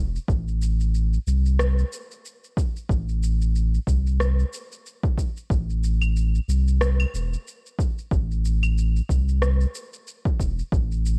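Organic downtempo in A minor at 92 BPM, this short cut from a longer piece moves in 4/4 with a 57% swing on the sixteenths, giving it a hypnotic, meditative sway. A deep, round sine sub bass opens at 0.0 seconds, sitting up front between E1 and C2 with a fast attack and sustained notes, and a sidechain pumping effect makes it breathe against the beat. Electronic shaker, rim click and claves join at 0.2 seconds, their overdriven percussion adding a gritty edge. A punchy, layered electronic kick drum arrives at 0.3 seconds, placed up front with the character of having been re-recorded in a small room. The whole recording carries a worn, warbling cassette-tape quality with pitch drift, and the space stays dry, with little reverb.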